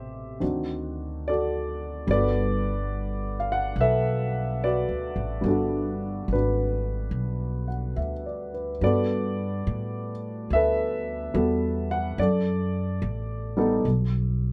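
An intimate baby grand piano, close enough that its action noise can be heard, accompanies this late-night, tender jazz ballad in G major at 72 BPM with a swung 4/4 feel, moving from D7b9 to Gmaj9 and later to A13sus4. A woody, thumpy pizzicato upright bass sits up front beneath it. The piano falls away at 13.9 seconds, and the bass sounds on alone until 14.5 seconds in a moderate club reverb, in this passage cut from a longer piece.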